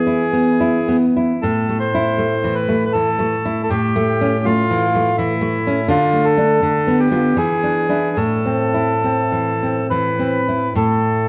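A rubato piece in 3/4 drifts between 67 and 85 BPM in A minor, tuned to A4 = 444 Hz, with an elegiac, yearning mood. This romantic duo, cut from a longer piece, pairs a reedy bandoneon carrying the melody between E4 and C5 with a fingerpicked nylon-string guitar accompanying from A2 to F4. Both instruments sit up front, the bandoneon bright and the guitar full-bodied with a deep classical tone. The harmony moves from E to Am, then through A7, Dm, Bdim/D and E7 before settling back on Am, with the chords giving way at 10.8 seconds. The sound is dark in production and bathed in the lingering reverb of a recital hall, and both parts play together until 11.3 seconds.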